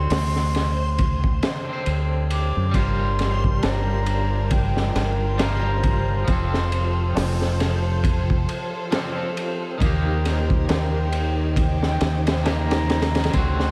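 A lazy, swung sixteenth-note groove in 4/4 drives this melancholic, cinematic trip hop fragment, carried by a crunchy breakbeat kit with a punchy kick, high-tuned snare, dark cymbals and a saturated, gritty edge with a rolled-off top, sitting up front alongside a deep, round dub bass played with the fingers. An electric guitar at the edge of break-up, twangy and picked with tremolo, supplies the accompaniment while a mellow silver concert flute sings the melody high above, airy and expressive with vibrato and a soft attack, coloured by vintage 12-bit sampler grit and tape echo. From 2.7 seconds a lush, bowed symphonic string section adds sustained chords in the background, and a very quiet, low-tuned ringing tabla joins at 3.6 seconds. Underneath, a faint reversed, detuned texture hovers on a single high note, dreamy and granular with a long release. The harmony moves from D7 to Gm7, F and Eb, all wrapped in small room ambience and a bed of vinyl crackle, and the passage is cut from a longer piece.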